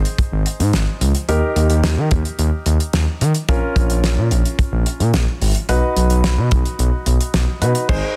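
A dense, heavily limited modern master sits in a small room ambience, giving this brief synth-pop cut from a longer piece a driving, nocturnal character in a straight 4/4. Up front, a smooth gliding synth bass blends sawtooth and triangle tones with a wave-folded edge, its fast attack giving way to sustained notes coloured by vibrato and portamento. A damped 70s drum kit joins at 0.1 seconds and sounds acoustic and dry, with dark cymbals, a fat snare, a tight kick and a rolled-off top, sitting forward in the mix across crash, hi-hat, kick and snare. A clear baby grand piano supplies accompaniment in the middle register with a present, polished tone, running until 8.2 seconds. The harmony moves through Ab, Eb, Bbm and B.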